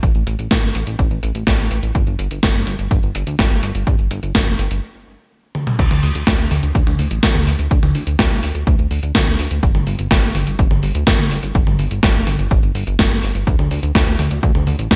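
Melodramatic and nostalgic, this 125 BPM italo disco excerpt in straight 4/4 pairs a glossy, chorused synth bass with a punchy electronic kick and an up-front, overdriven 80s digital drum machine whose gated-reverb snare, hi-hat, crash and toms crack through a bright, dry 1980s-style mix, with a stop from 4.8 to 5.8 seconds and a drum fill at 5.5 seconds leading into a new section.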